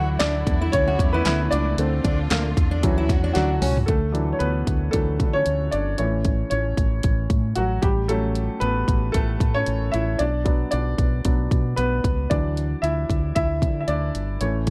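This hopeful, uplifting piano-driven pop excerpt opens with a clear, woody upright piano taking the lead over a round, punchy fingered electric bass, a fingerpicked steel-string acoustic guitar riff with a full-bodied jumbo tone, and a lush bowed string section sitting distant in the background. A house drum kit joins at 0.2 seconds, its electronic, layered sound combining handclaps, bright hi-hats, a punchy kick, snare and toms with a lightly swung sixteenth-note feel. Just after a short drum fill, the strings and guitar drop away around 3.9 seconds, leaving the piano, bass and drums up front as the piano carries on its solo role. The harmony moves from Dadd9 through Bbmaj7/D and Dmaj7, then on through A, F#m/A and Bm before returning to Dadd9. The production has a dark, warm studio ambience around the short-sustain piano and the direct, amped bass.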